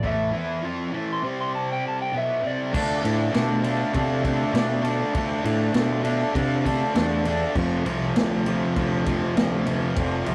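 A straight 4/4 beat at 100 BPM drives this raw, swaggering garage rock excerpt, where a vintage drum kit with a punchy kick and rolled-off top and a growling, overdriven picked bass back an up-front, double-tracked fuzz guitar riff, while a slightly broken-up slide guitar carries the melody through an opening break until 2.7 s, and a mellow combo organ with light vibrato holds sustained chords in the background of a rough rehearsal-room sound with warm saturation.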